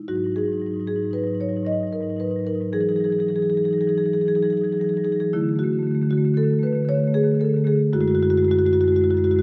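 Set in an unusual 5/4 metre at 115 BPM, this contemporary classical piece for solo marimba moves with a loose, rubato feel, its pulse bending freely rather than holding strict time. The mood is playful and warm, carried entirely by a single marimba played with soft mallets, which sounds from the start to 9.4 seconds across a range from F#2 to D#5. Its rosewood bars give a woody, round, mellow tone that sits mid-forward and up front in the mix. The harmony drifts through G#5, Emaj9, D and F#sus2, lending the brief passage a gently shifting, open colour. A wet recital hall reverb with a 1.4-second decay surrounds the instrument, adding a sense of space around each struck note. Tuned to A4 = 439 Hz, this short excerpt is cut from a longer piece.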